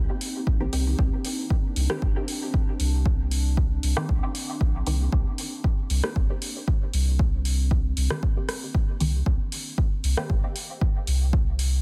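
Hazy and nocturnal, this dub techno fragment, cut from a longer piece, settles into a steady, straight pulse over a single Cm7 chord. A warbling, lo-fi pad sits dark in the background, its detuned, wave-folded tones smeared with chorus and built-in reverb, holding sustained chords with a slow attack and long release until 9.2 seconds. Up front, a round, soft sub bass pumps against the sidechain while a punchy electronic kick, re-recorded in a small room, drives the groove. An analog drum machine adds hi-hat and rim clicks with the same small-room character, and a muted, detuned sawtooth chord stab plucks through phaser and dub echo, its filter sweeping until 9.3 seconds. The dense, heavily limited modern master wraps the parts in a digital ambience.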